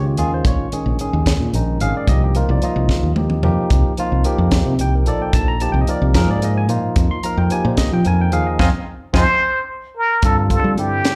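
A plunger-muted trumpet enters at 9.1 s and carries a brief solo melody, its breathy, whispered tone shaped by wah-wah and vibrato, with a soft attack, smooth top and an intimate jazz phrasing set in slapback echo and plate reverb. This intense, slick stretch of electric jazz fusion moves in 6/8 at 74 BPM, counted in dotted quarters with a straight feel, and is cut from a longer piece. Beneath it, a barky tine electric piano played clean through a combo amp supplies the accompaniment, with its own plate reverb and slapback echo, over chords moving from Bbm7 to Cm7, Fm11 and finally G9sus4. A fingered electric bass sits dark, round and direct, while a dry, tight funk kit with a high-tuned snare and a tight kick adds drum fills, the last of them, from 8.6 s, landing with a full-band accent. The whole thing is heard as a live gig through the venue's PA, with light club reverb around it.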